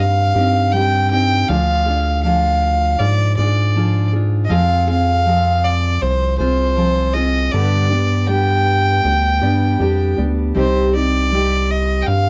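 Light reverb opens up the space around this short passage, while the fiddle and bass sit up front. It is acoustic folk for a duo or small band in C minor, moving at an unhurried 79 BPM in straight 4/4, with a haunting, melancholic mood. A single bowed fiddle carries the melody between C5 and G5, its tone clear and earthy with a light vibrato. Beneath it, a picked steel-string jumbo guitar gives full-bodied accompaniment with the odd finger squeak, and a rubbery, hollow square-wave bass with a bouncy, resonant filter pluck and dark sustain holds the low end. The chords run from Cm through Ddim, Fm and G before returning to Cm at 10.6 seconds, in a 12.3-second fragment cut from a longer piece.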